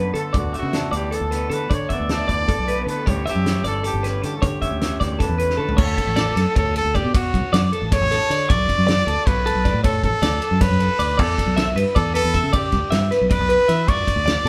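Math rock and midwest emo in a wistful, intricate 7/8, cut from a longer piece, where a close-miked trumpet with light vibrato carries the melody up front over bright, twangy, compressed twelve-string arpeggios, a round foam-muted bass, a loose indie kit with dark cymbals, fat snare and punchy kick, and a lo-fi, slightly broken-up guitar that drops out at 7.1 seconds, all played live in one room with moderate reverb and a drum fill at 5.5 seconds leading into the second section.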